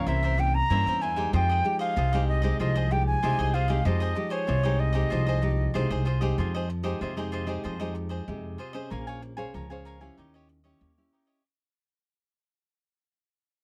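A silver concert flute opens this lively, bittersweet samba excerpt, its airy, tongued melody carried with vibrato over a crisp, picked cavaquinho and a full-bodied, fingerpicked nylon-string guitar whose finger squeaks are audible. A woody pizzicato upright bass on steel strings sits up front from 0.1 seconds, anchoring the straight four-beat feel. Harmonies move from C7b9 to Fm9, and the flute stops at 5.7 seconds, so the strings carry the second section. As the music shifts to Bbm9 and then Eb7b9, the remaining strings fade out from 6.4 seconds until the cut at 11.4. Close, detailed microphones and little reverb give the acoustic instruments an intimate, present sound.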